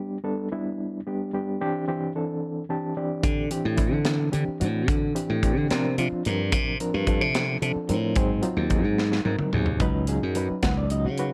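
Driving and intense, this electric jazz fusion passage, cut from a longer piece, moves in a straight 6/8. An overdriven reed electric piano opens alone, its gritty, reedy tone pushed through a combo amp with a fast tremolo, voicing suspended ninth chords such as A9sus4 and D9sus4 before a short fill at 2.4 seconds. At 3.2 seconds a glassy slap bass and a modern studio drum kit arrive together. The bass is bright, growly and direct, while the kit pairs a punchy kick with a high-tuned snare, hi-hat and toms, its top rolled off. The harmony moves through C9sus4 and G#7, and a drum fill leads into a closing change to C#9sus4 at 9.8 seconds, all set in light reverb with a dark production that keeps the three parts up front.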